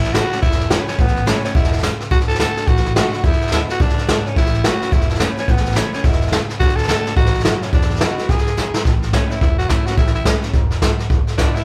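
A swung 214 BPM rockabilly tune in A major, rowdy and retro, carries this brief cut from a longer piece, with the band playing live in one lightly reverberant room. A raspy, growling tenor saxophone takes the melody with a present, punchy tone over a jazz brush kit with a boomy kick and rolled-off top, while a thumpy, gut-strung upright bass and a picked dreadnought acoustic guitar sit in the background through the A–D–E7 changes. A drum fill at 8.6 seconds leads into a new section at 8.9 seconds.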